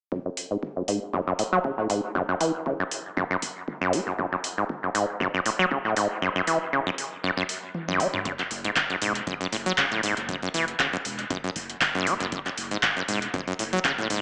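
Soaked in wet spring reverb and dub echo, this excerpt of driving, hypnotic acid house has a small-speaker sound, moving at 118 BPM in F# minor with a light 16th-note swing. An up-front, squelchy sawtooth acid bass riff with resonant, plucky filtering and gritty tube saturation pumps under a filter sweep, backed by a deep electronic kick and a booming analog drum machine of handclaps, metallic hats and toms, both re-recorded in a large room. The kick drops out at 6.2 seconds, a drum fill arrives at 7.7 seconds, and a thick, saturated sine sub bass enters in the background at 8.5 seconds.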